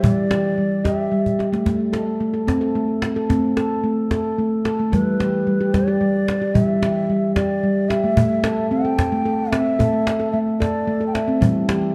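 A dark, reverberant production with a wet echo-chamber sheen and a small-room ambience frames this hypnotic, meditative world piece in A minor, moving at 74 BPM in 6/8 as the harmony alternates between Em and Am. Up front, a ringing nitrided-steel handpan played with the fingertips spins smooth arpeggios throughout, wrapped in a diffuse ambient delay, while a woody, compressed and saturated cajon with faint snares and soft hands keeps time and adds a brief fill at 1.3 seconds. A breathy, mellow bass bansuri with a straight, tongued tone and rolled-off highs carries the melody through its own diffuse delay, sounding briefly at the start and returning at 4.9 seconds.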